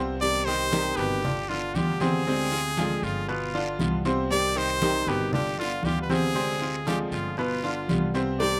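A fingerpicked flamenco guitar with old strings, a bright, slightly worn concert grand playing arpeggios, and a pizzicato upright bass with dark, thumpy gut strings open this nostalgic excerpt of Cuban son and guajira. At 0.2 seconds a brilliant, close-miked trumpet takes the solo melody up front, forceful and punchy with vibrato in a pop style. Congas with a thick skin and hard hands enter at the same moment in the background, alongside a raspy guiro. The guitar, piano and guiro each carry a slapback echo, while the outdoor recording otherwise stays dry, with little reverb. The band cycles through a repeating minor progression of Cm, G7, Dm7b5 and G7 until a round, low-tuned cowbell sounds very quietly at 8.4 seconds, just before the clip ends.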